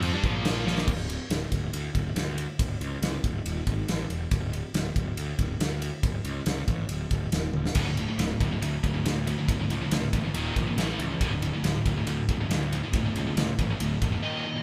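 Dark and relentless, this heavy metal excerpt at 139 BPM in D harmonic minor pairs a punchy, up-front acoustic drum kit and a growly, fuzz-drenched picked bass with two distorted rhythm guitars, one scooped and one tight in the background, which hit a brief riff, drop out at 0.9 seconds, then return at 7.8 seconds over a D5, Eb5 and A5 progression before a dark high-gain lead guitar sounds a single Eb5 at 14.2 seconds, all captured as a band playing live in one room with light reverb.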